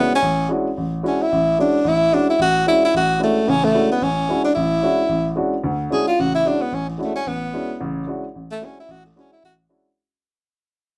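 A close-miked tenor saxophone leads this hypnotic, spiritual swung jazz piece at 222 BPM in D lydian, its soft attack, light vibrato and scooped notes up front over a warm, present baby grand piano accompaniment that opens on a Dmaj9#11 chord, the band playing live in one room with wet studio reverb, before the saxophone takes a solo from 5.6 s as the music fades out through 10.0 s, cut from a longer piece.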